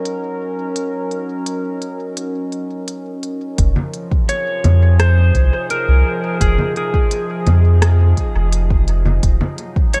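Spacious and meditative, this ambient dub excerpt floats on a warbling, nostalgic lo-fi pad with chorus and its own reverb, joined by an organic electronic kit of congas, smooth hi-hat and rim click in a small room with dub echo; a deep, round sub bass and an up-front electronic kick arrive at 3.6 seconds, and a clean lap steel guitar enters at 4.3 seconds, its slide and volume swells trailed by dub echo within a mellow, low-passed mix.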